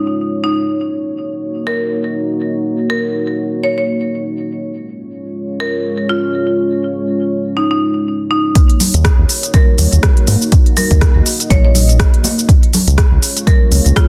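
A marimba struck with hard mallets carries the melody from 0.4 seconds, its woody, bright tone trailed by delay over a dark, detuned analog pad with chorus and sidechain pumping, in a hypnotic Afro house groove at 122 BPM in Eb minor with a 16th-note swing, moving between Db and Ebm7. At 8.6 seconds the drop arrives with an overdriven, deep electronic kick up front, an electronic kit of cabasa, smooth low-passed hi-hat and rim click, and ringing high-tuned congas in the background, joined at 8.9 seconds by a round, up-front analog bass with sidechain pumping. Light digital ambience surrounds a dense, heavily limited modern master in this excerpt cut from a longer piece.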